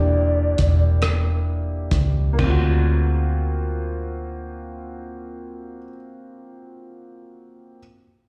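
A dark, round vintage electric bass sits up front in this short cut from a slow, yearning, late-night R&B piece in 6/8 and D minor, moving at roughly 42-48 dotted-quarter beats per minute and playing its foam-muted, punchy low line until 5.8 seconds. A soft synth lead, layered in octaves with a sub octave and a triangle-and-sine tone coloured by chorus, phaser, vibrato, slapback echo and analog delay, sustains a single high D only through the opening 1.5 seconds. A clear, worn grand piano carries the accompaniment with long sustain and its own slapback echo, lasting the full 7.8 seconds. A cloth-damped, thuddy drum kit with a tight kick, rim clicks, toms, hi-hat and a dark china cymbal sounds muffled, gritty and lo-fi, as if in a small room. The tempo slows through the first 2.4 seconds over an Em7b5 chord before the harmony shifts to D7alt as a second section begins, and the whole recording carries the light recital-hall reverb of a live gig heard through the venue's PA.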